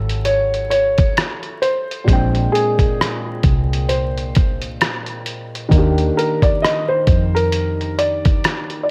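Vinyl crackle and light reverb wrap this hazy, melancholic lo-fi hip hop cut, a slow 66 BPM swung groove in which a felt-muted upright piano carries a soft, intimate melody with audible action noise, a dark, woody upright piano plays the accompaniment, a round, foam-muted electric bass adds punch until 8.4 s, and a compressed, pitched-down sampler-style kit of thumpy kick, hi-hat and rim click sits up front, while both pianos are colored by cassette tape and a low-pass filter.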